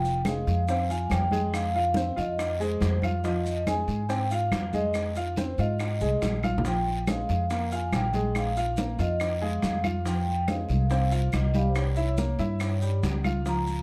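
Sophisticated and sultry, this Afro-Cuban jazz passage sets a mellow vibraphone, struck with soft mallets and shimmering with slow motor vibrato, over a clear upright piano with long sustain and an up-front, thumpy pizzicato upright bass on gut strings, moving from Fm7 through Bb5 and Fm to a closing C7b9. Close, dry congas ring at the heart of the percussion, joined by raspy guiro, with woody claves and grainy maracas in the background, while round, low-tuned bongos played with soft hands sound distant in a large room. A drum fill arrives at 6.4 seconds, and the whole dark production sits in light reverb, cut from a longer piece.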